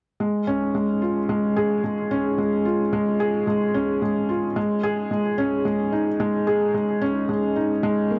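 A felt-muted upright piano, soft, mellow and intimate with a vintage edge, plays a delayed riff up front through a huge ambient reverb in this moving, cinematic electronica fragment with a dark production, running from 0.2 to 8.2 seconds.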